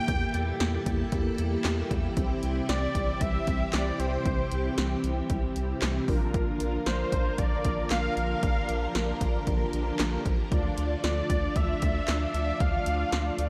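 Nocturnal and melancholic, this synth-pop passage cut from a longer piece moves at 115 BPM in a straight 4/4. A punchy analog drum machine sits up front with kick, snare, hi-hat and handclaps, its tape-warm tone giving the snare, clap and hats a short room. Beneath it, a round, deep analog bass holds the low end from Bb1 to E2, while a string machine spreads lush, vintage ensemble chords with a soft attack and long release, set back in the balance. A mellow synth brass fills the middle with brassy, detuned sawtooth tones colored by chorus and phaser. On top, a thick, bold unison lead carries the melody between C5 and G5, its ring-modulated edge and vibrato trailing into a diffuse ambient delay, as the harmony moves from Edim through C and Bb to Dm, all inside a dreamy mix soaked in a moderate hall reverb.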